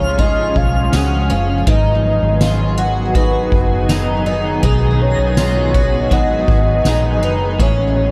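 A dreamy, ethereal slice of dream pop, cut from a longer piece, moving at an unhurried 81 BPM in a straight 4/4 through C#, G#m7 and, at 7.6 seconds, Amaj7. A soft, octave-layered synth lead carries the melody, its round, full tone touched by chorus, tremolo, vibrato and tape echo, while an electric guitar at the edge of break-up picks along with compressed grit, tremolo and ensemble chorus. A shimmering ambient pad holds detuned, slow-blooming chords bathed in reverb, and a picked twelve-string acoustic guitar adds bright, boxy, octave-doubled arpeggios with analog chorus and tape echo. Underneath, a vintage foam-muted electric bass sits prominently with a dark, round tone, and a soft-mallet drum kit enters at 0.2 seconds with a boomy kick, fat snare, ride cymbal and tambourine. A twinkling granular sparkle glints high in the background until 5.0 seconds, and the whole mix sits in a small room ambience with a dark, warm production.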